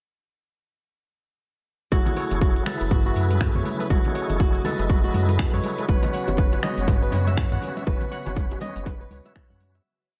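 Roomy and punchy from its start at 1.9 s, this driving, earthy afro house piece at 121 BPM in F# dorian swings its sixteenths over F#m7 and Bsus2/F# chords, with an overdriven, layered kick pounding four-on-the-floor up front, a round sine sub bass, a crisp fingerpicked kora step sequence with delay, key-clicking tonewheel organ stabs through a fast rotary speaker, and a soft, detuned sawtooth pad with chorus, these last four pumping to the sidechain, while an afro-pop kit adds metallic hats, finger snaps and toms, thick-skinned congas and a grainy shaker sit in the background, low-tuned bongos slip in at 6.0 s, and the whole piece fades out from 7.2 s.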